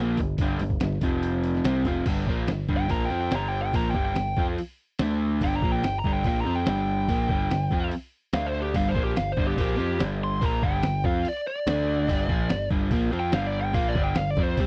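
Classic rock in G minor at 144 BPM, swaggering and brooding, where a crunchy, double-tracked overdriven rhythm guitar riffs over punchy picked electric bass and a muffled, pitched-down sampler-style drum kit with a thumpy kick, and at 2.8 seconds a biting lead guitar with overdrive and slapback echo joins them for a solo over Gm and D5 chords, all captured in a dry, close 1970s-style studio sound in this short excerpt from a longer piece.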